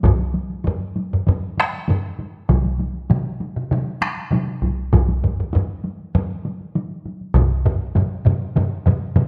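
A straight 4/4 pulse at 99 BPM drives this short cut from a longer Japanese traditional taiko piece, and the mood is driving and powerful. A solo taiko line struck with heavy sticks sits up front in a small room from the opening and drops out at 7.5 seconds. Around it, three taiko ensemble parts build the wall of percussion. Two ensemble parts begin at once, one with heavy sticks and one with hard sticks, and a third heavy-stick ensemble in a more live room joins at 2.5 seconds. Close, detailed miking keeps the drums immediate, while a moderate scoring-stage reverb gives the hits a sense of space.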